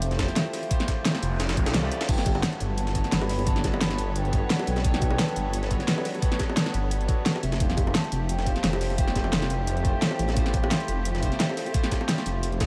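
A dreamy, reverb-soaked mix opens this lush liquid drum and bass fragment at 174 BPM in 4/4 with a light swing, moving from Fmaj9 to Gmaj9#11 and back. Up front, a menacing, saturated detuned saw bass swells beneath a knocking, tape-warm electronic kick that arrives at 0.2 seconds, while an overdriven pop kit with a fat snare layers over a gritty, pitched-up breakbeat kit with filtered hats and snare sitting in the background. A barky tine electric piano through a combo amp provides accompaniment with phaser and diffuse delay, and a smooth vibraphone carries the melody with slow motor vibrato. A very quiet noise sweep appears at 1.2 seconds, and from 2.1 seconds woody, bowed studio strings hold soft chords in the background, joined at 2.3 seconds by faint, round, low-tuned bongos.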